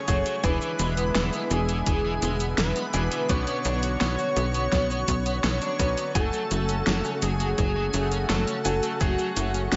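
A lightly reverberant mix with a rolled-off top opens this cinematic, driving synthwave excerpt in F# minor at 84 BPM, moving through E7, Bmadd9 and F#madd9. A thick, detuned sawtooth unison lead carries the melody with vibrato while a soft, airy sine lead with tape echo drifts behind it, over a lush, warbling pad that pumps to the sidechain and bright grand piano stabs. A biting overdriven guitar riff with chorus and digital delay, a tight, punchy sequencer bass up front, a thumpy electronic kick that stops at 9.2 s, and a layered pop kit with a fat gated snare, hi-hat and shaker drive it forward.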